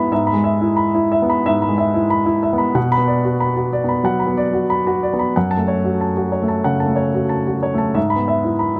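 Neoclassical minimalist piano in B dorian, this reflective, wistful excerpt from a longer piece moves at 92 BPM in 4/4 with a rubato feel. A solo baby grand piano, polished and present, sits up front across its range from F#2 to B5, moving through E/G#, Bm and F#m before returning to E/G# at 8.0 seconds. Close, detailed microphones and little reverb keep the instrument's warm tone intimate and clear.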